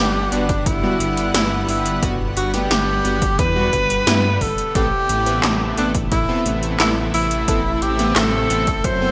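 Nocturnal and nostalgic, this synthwave excerpt sets an intimate, breathy, close-miked tenor saxophone melody with delay up front over a lush, warbling unison pad with chorus and sidechain pumping, a deep, rumbling detuned saw bass, glossy chorused polysynth stabs entering at 0.3 seconds, and punchy electronic drums with a gated-reverb snare, metallic hi-hats and handclaps, all moving from Gmaj7 to Amadd9 in a bright 1980s-style digital production with plate reverb.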